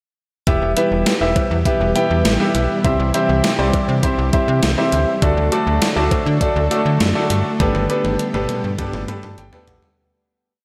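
Wistful yet upbeat, this short synth-pop piece in G major moves at 101 BPM over an Em–C–D–Gadd9 progression, with a brilliant concert grand piano playing syncopated, close-voiced chords up front while a vintage string-machine cello pad, sawtooth and mellow with ensemble chorus, sustains beneath. A snappy, metallic FM slap bass runs a sequenced line, and a thumpy 80s digital drum machine drives the beat with cowbell, hi-hat, a gated reverb snare and syncopated toms. Everything sits in a lush hall for a big arena sound, and from 7.6 seconds a drum fill carries the fade-out, with a piano fill joining at 8.8 seconds.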